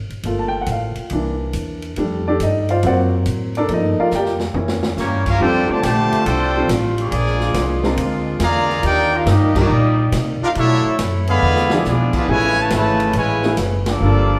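A swinging 140 BPM big band groove in 4/4 opens with woody, thumpy pizzicato upright bass, a punchy kit and a clear baby grand piano, the bass and piano sitting up front, through a joyful, brassy excerpt cut from a longer piece, before bright trumpets carry the melody over a trombone second line at 5.0 seconds, tight vintage-toned saxophones add soft sustained chords from 5.4 seconds, and band accents at 9.5 and 13.8 seconds ring out in a reverberant large studio heard from further back.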